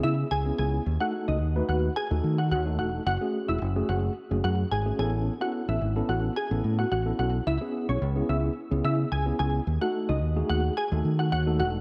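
Dance-pop at 109 BPM in a straight 4/4, this driving, energetic fragment cut from a longer piece is led by a glassy, detuned wavetable pluck with a fast attack, a filter sweep and a noise layer, its bright, crystalline melody up front with chorus and slapback echo. A mellow, clean tine electric piano plays accompaniment as though through built-in speakers, while a punchy, warm fingered electric bass sits direct and amped at the front of the mix. The harmony moves through C#m7, D#dim, F#madd9 and Aadd9, all set in a moderate echo chamber reverb.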